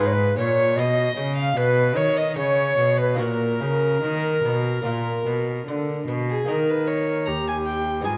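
Rubato and flowing in 4/4, this solemn baroque-style sonata excerpt sets an airy, straight-toned wooden flute melody above a reedy, lightly vibratoed violin second line, with a rich gut-string cello bass up front and a delicate, fingerpicked lute in the background, captured with close, detailed microphones in a moderate recital-hall reverb.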